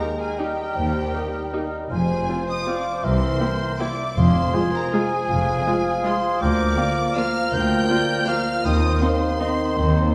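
A classical orchestral ballroom waltz, elegant and festive, sways in three with uneven beats and a rubato lilt, cut from a longer piece. A lush, focused violin section sings the melody up high, while a second chamber violin section with even, smooth bowing sits in the background beneath it. The woodwinds weave second lines: a dark, close-miked clarinet, a pure, hollow flute with vibrato and a solo oboe with light vibrato, over a mellow bassoon and a warm viola section in the accompaniment. A French horn section holds sustained chords in the background, and at 0.8 seconds rich cello and double bass sections enter on the bass line, the basses expressive and close. The timpani sounds with hard mallets at 4.2 seconds, and the orchestra is heard from further back in a wet scoring-stage reverb.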